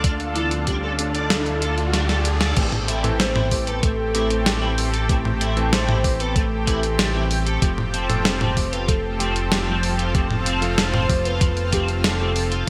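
A chorused synth bass sits up front in this nocturnal, moody synthwave excerpt at 95 BPM in A minor, its glossy, nasal pulse tone with a filter pluck pumping against an electronic kick drum that thumps with tape-warm weight. A gated 80s digital drum machine, also prominent, adds crash cymbal, hi-hat, toms and a snare drenched in gated reverb, while a riser in the background opens the piece and ends at 2.6 s with a drum fill. Over a silky, string-like analog pad that pumps beneath its ensemble chorus, a soft octave-layered synth lead enters at 0.4 s, round and full-bodied, colored by vibrato, phaser and digital delay. From 2.6 s a vintage electric grand piano with a clangy low end plays stabs in the background, alongside a crunchy overdriven guitar riff that has run from the start, carrying chorus and delay. The harmony moves from Dm to Am7 and then Fadd9, all set in a lush hall reverb with bright 1980s-style digital production.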